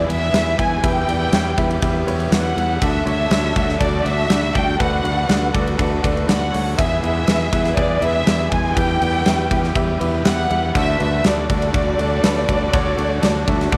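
A huge arena drum kit, with a boomy kick, bright cymbals and a pumping room sound, drives this anthemic, hopeful piano-driven pop excerpt from 0.1 s, alongside an up-front, growly, punchy fingered electric bass. A clear, polished baby grand piano carries the accompaniment under a lush, distant violin section playing the melody with vibrato and a slapback echo. A very quiet, smooth string section holds sustained chords with portamento, and a faint overdriven electric guitar riff sits beneath as the harmony moves through E, E minor and D in a moderate plate reverb.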